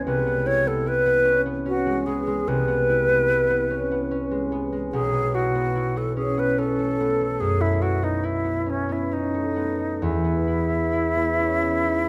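Classical impressionist music for a duo of alto flute and harp, this dreamy, pastoral fragment of a longer piece unfolds in 12/8 with a free, rubato feel. The alto flute carries the melody throughout the 12.1 seconds, its tone airy and bright, shaded with vibrato and a soft attack, and placed up front. The concert harp supplies the accompaniment, fingerpicked and mellow, its low and middle strings ringing close to the listener. The harmony drifts from E6/C to B9sus4 at 4.9 seconds before settling on a major-seventh chord at 10.0 seconds. A moderate scoring-stage reverb lends the duo a gentle, spacious glow.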